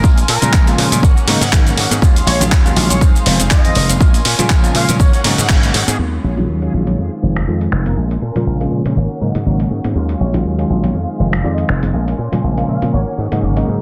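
Funky and groovy, this filtered disco house cut moves at 121 BPM in 4/4 with a light 16th-note swing, sitting in Eb dorian over a looping Bbm7, Ab9sus4, Ebm11 and Fm7 progression. An overdriven, punchy electronic kick sits up front until 5.6 s, alongside a gritty, dusty soul sampler-style kit of hi-hat, handclaps, finger snaps, shaker and crash, while very quiet tambourine and congas add bright acoustic texture. A dry, foam-muted slap bass with tube saturation carries the low end prominently, and a barky, bell-like tine electric piano with phaser and 12-bit sampler grit comps from 0.4 s. In the background, a twangy, scooped electric guitar through an envelope filter plays a picked riff, a lush symphonic string section holds bowed chords with vibrato, and a dark, distant trumpet section carries the melody through dub echo. Sidechain pumping and low-pass filtering shape much of the mix, a band accent lands at 5.5 s, and a filter sweep runs from 6.0 s to the end of this dense, heavily limited, nearly reverb-free excerpt.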